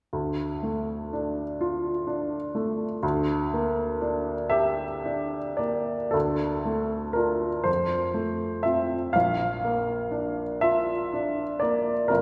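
Moving in 12/8 with free, breathing rubato, this brief excerpt from a longer romantic nocturne for solo piano carries a yearning, wistful mood. A baby grand piano plays alone from 0.1 to 12.2 seconds, its tone present and close up front, spanning from G1 in the bass to F5 above. The harmony opens on D minor and moves to G minor over a D bass at 3.0 seconds before returning to D minor at 6.1 seconds, where a second section begins. From there it turns toward F major and then B-flat major, lending the closing bars a hint of tender uplift. A generous, lingering reverb, like that of a church or concert hall, surrounds the piano and lets each chord hang in the air.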